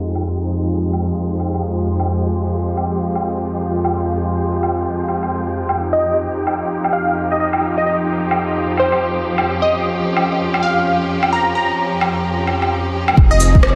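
A rich, smooth studio string section holding sustained chords with sidechain pumping opens this melancholic, rainy future garage excerpt alongside an airy, breathy wind-like noise texture in the background, while a swung electronic woodblock, shaker and rim click pattern plays throughout, a punchy, catchy detuned unison lead with delay carries the melody from 5.9 s, and at 13.2 s a rumbling, saturated detuned saw bass and a deep electronic kick drum arrive, the whole mix bathed in huge ambient reverb, a low-pass filter and a long filter sweep.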